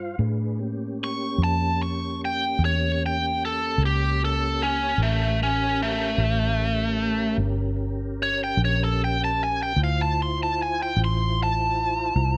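A slow 12/8 pulse sets the pace for this mournful, smoky blues fragment, cut from a longer piece. An overdriven lead guitar, bright and picked, sits up front and carries the melody as a solo through the whole 12.4 seconds with a biting tone. Beneath it, a tonewheel organ holds soft, flute-like chords, its clean sound colored by chorus vibrato and a slowly turning rotary speaker. A vintage electric bass, played with the fingers and muted with foam, gives a dark, round, punchy low end that also sits up front. The harmony leans on a tense A7b9 before settling onto Dm9 near 9.8 seconds, and a light reverb lends the room a gentle glow.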